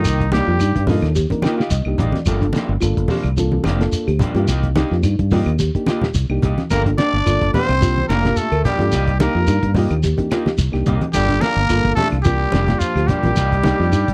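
Driving and defiant, this dry, close afrobeat excerpt rides a round, up-front fingered bass and a muffled, cloth-damped drum kit with a fat snare, while congas, grainy shekere and woody claves fill in the percussion, a dark, slightly broken-up electric guitar plays stabs, a reedy electric piano comps with a fill at 1.2 seconds, and a soft-mallet vibraphone rings out arpeggios with slapback echo, as a raspy, growling trumpet with slapback echo and a punchy, bright trombone sound briefly at the start and then return together at 6.7 seconds, the trumpet carrying the melody and the trombone a second line over a Cm7–Gm7 vamp.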